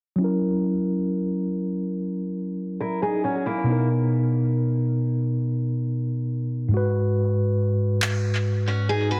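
A mellow, clean tine electric piano opens this moody, sensual contemporary R&B passage, cut from a longer piece, playing F#7, Bmaj7 and G#m7 up front through a low-pass filter as a filter sweep runs throughout, before a picked steel-string acoustic guitar with audible finger squeak enters at 2.8 s with warm arpeggios through tape echo, and produced electronic handclaps, also echoed, land briefly at 8.0 s in a lightly reverberant, echo-heavy mix.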